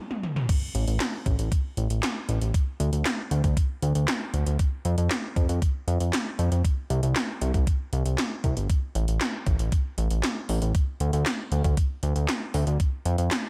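A straight 4/4 pulse starts with a brief drum fill on the 80s electronic pad drums at 0.1 seconds, then settles into a driving synthwave groove of crash cymbal, handclaps, metallic hi-hats and a gated snare and toms bathed in gated reverb, with a thumpy, sampler-style electronic kick up front from 0.5 seconds. A fat analog bass enters at 0.7 seconds, its nasal, detuned sawtooth and square-wave tone saturated and shaped with a fast-attack filter pluck before sustaining low in the register. The tape-tinged, cinematic mix sits in light reverb, and this piece is cut from a longer work.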